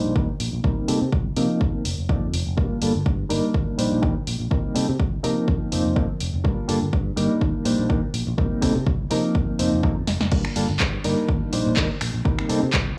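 A dry, gritty hardware recording with small room ambience and a light digital reverb opens this filtered disco house excerpt, a filter sweep running through its full 13.0 seconds at 124 BPM with a gentle 16th-note swing and a sensual, nostalgic mood. A bright, reedy electric piano sits up front with fast tremolo, phaser and sidechain pumping, cycling through Ebmaj7, Cm7, F7sus4 and Gm7 over a direct, fingered electric bass thickened by tube saturation. A punchy, tape-tinged electronic kick enters at 0.2 seconds, joined by an analog drum machine of snare, handclaps, finger snaps, hi-hat and crash with short room on snare, clap and hats, and a drum fill lands at 10.1 seconds.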